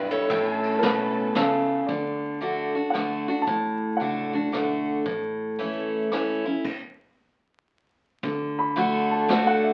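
Heard through the crackle of a very old 78 rpm record and a wet club reverb, this excerpt of nostalgic, sunny honky-tonk and classic country sways in 3/4 with a swung lilt. A full-bodied dreadnought acoustic guitar sits up front, picking the accompaniment throughout, while a second, brighter picked acoustic guitar carries a brief melody at the very start. Behind it, a twangy, compressed pedal steel with volume swells and a lush, bowed violin section with vibrato and a soft attack hold sustained chords through the opening, then fall away at 1.9 seconds. A distant, roomy brush drum kit enters just after the start with a tight kick and medium-tuned snare, and a dark, round, foam-muted electric bass stays low in the background. A woody upright piano adds a second line and takes a solo from 1.9 seconds, with a stop at 6.6 seconds before the piano returns at 8.6 seconds to close.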